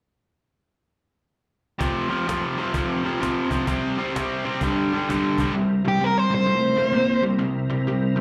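A biting, double-tracked electric guitar riff opens this swaggering blues rock and southern rock excerpt at 1.8 seconds, picked with slapback echo and sitting up front over a snappy cajon played with hard hands, its snares sounding in a small room, all heard live through a club PA with moderate reverb. At 5.6 seconds the cajon gives way to a thick, gritty tonewheel organ holding sustained chords through a slow rotary speaker and chorus vibrato. Just after, at 5.9 seconds, a dark, smooth overdriven lead guitar adds a short picked melody up front with its own slapback echo, over a swing feel and chords moving from F5 to C7.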